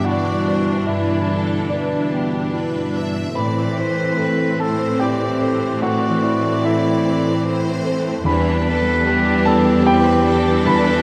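Sorrowful and moving, this cinematic excerpt drifts in a rubato 3/4 at 74 BPM over G6, Amadd9 and Em chords: a background violin section carries the focused, vibrato-laden melody, a second smooth, even violin line joins at 0.1 s, and a clear, distant clarinet sings its own line; a viola section and a natural-toned grand piano accompany, a very quiet mellow French horn section holds chords, a ringing thumb-plucked concert harp adds arpeggios, and a rich cello section anchors the bass, set in a moderate scoring-stage reverb.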